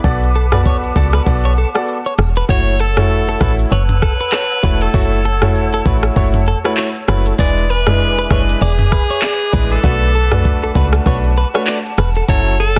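A relaxed afrobeats groove at 98 BPM in 4/4, with a swung sixteenth-note feel, carries this mellow, smooth excerpt in F# minor. An electronic afro-pop drum kit sits up front with a knocking kick, smooth hi-hats, handclaps, rim clicks, shaker and toms, while a deep, round log drum bass with a fast attack and dark, decaying tone anchors the low end. A bright baby grand piano plays accompaniment with short sustain and audible action noise, and a distant flute ensemble holds airy sustained chords with vibrato in the background. From 0.4 seconds a twangy, direct-recorded clean electric guitar repeats a picked riff through digital delay and a warbly pitch drift. At 2.5 seconds an edgy alto saxophone enters with the lead melody, its scooped pop-style notes also touched by delay, as the chords move from F#m7 through E7 and Bm7 under a dense, heavily limited modern master.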